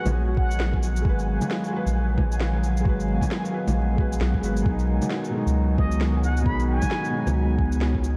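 A bright, plunger-muted trumpet with wah-wah, light vibrato and scooped notes opens this ghostly, nocturnal future garage excerpt at 133 BPM in G# dorian, its delayed phrases floating over a soft felt-muted upright piano with tape echo, a warbling, nostalgic lo-fi pad carrying chorus and vintage 12-bit grit, and a flickering granular texture in the background; a deep, round dub sub bass and electronic bongos, shaker and woody snare join at 0.1 s, a tape-warm kick follows at 0.4 s, the piano, pad and bass pump to the sidechain, the harmony moves from G#m7 to B6 at 4.7 s, the trumpet returns at 5.8 s, and the dreamy mix is soaked in cathedral reverb and vinyl crackle.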